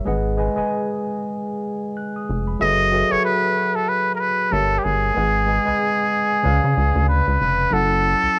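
A nasal, straight-muted trumpet enters at 2.6 seconds with a bright, vibrato-tinged jazz solo over a worn, slightly out-of-tune electric piano with light overdrive and lush chorus and a rubbery, dark square-wave bass, giving this short cut from a longer introspective, smooth R&B piece at 94 BPM a swung sixteenth-note feel, cassette-tape character and light reverb as it moves through G#m7, F#m11 and C#7b9.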